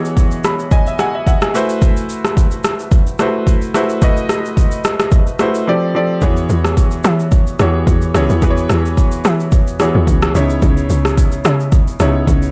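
The overdriven deep house drum kit stands out most, sitting up front with a deep kick, rim click and shaker that sound layered and electronic, as if re-recorded in a large room. This is a soulful, relaxed amapiano piece in E major at 109 BPM, with a swung sixteenth-note feel, cut from a longer piece. A worn, vintage baby grand piano plays smooth accompaniment from the start, opening with a fill between 0.2 and 1.8 seconds over chords moving from E69 to Am6 and later F69 and C#m7. The drums drop out briefly from 5.7 to 6.2 seconds, and at 6.2 seconds a tight, punchy log drum bass enters with a fast attack, decaying tones and a noisy FM edge. The production is dark and dry, with little reverb.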